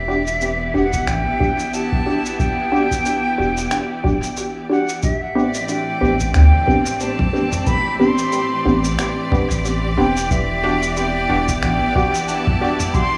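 Ambient dub at 91 BPM in 4/4 with a 16th-note swing, this spacious, meditative excerpt sits in A dorian, moving from Em9 to Am11 at 5.0 seconds and back to Em9. An airy silver concert flute carries the melody up front, close-miked with a crisp attack, expressive vibrato and a dub echo trailing its phrases. Behind it, a lush bowed string section holds sustained chords, biting and intense yet distant. A round, soft sub bass anchors the low end until 11.8 seconds, while a muted, detuned sawtooth chord stab with a filter pluck and short decay adds evolving accents through chorus, cassette tape colour and dub echo. The rhythm comes from a muffled, compressed sampler-style kit of cabasa, finger snaps and toms, joined at 0.9 seconds by a deep analog kick, both tape-warm and set in small-room ambience under a moderate spring reverb.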